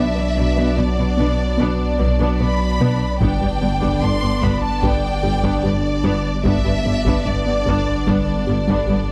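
A tense, vast cinematic passage at 74 BPM opens on B minor with a lush, vibrato-rich violin section carrying the high melody over a second violin line, smooth background violas, focused cellos and expressive double basses, all wrapped in a shimmering, detuned pulse-width pad, a dark round pluck arpeggiating through chorus and delay, and a deep, thick saturated sub bass, before hard-stick taiko drums enter close and dry in the background at 3.2 seconds as the harmony moves to G, the orchestra set in a moderate scoring-stage reverb.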